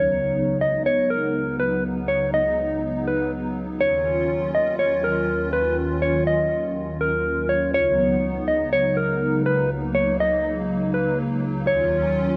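Hazy and melancholic, this half-time hip hop fragment at 122 BPM drifts between Db9sus4 and Ebm9 chords, with a new section arriving at 7.7 seconds. A dark, clean electric guitar sits up front carrying the melody through tape echo, while a hollow, flute-like pad with a slow attack and detuned ensemble chorus holds sustained chords beneath it. Both parts play throughout, bathed in a lush hall reverb that lends the short clip a dreamy, distant glow.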